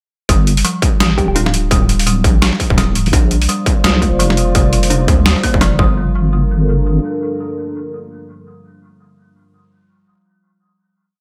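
A sparse half-time beat at 169 BPM with swung 16ths drives this tense, spacious G minor drum and bass piece, as a distorted, up-front electronic kick and a gritty, pitched-down sampler-style kit of snare and hi-hat sit under long, deep wobble bass notes with chorus, while a woody kalimba loops a 10-step sequence through dub echo that drifts against the bar, a round, tine-like synth pluck adds a brief phrase at 1.2 seconds, and from 3.6 seconds a moody, detuned analog pad pumps alongside an eerie metallic drone in a dry mix before the drop gives way to a final hit at 6.0 seconds.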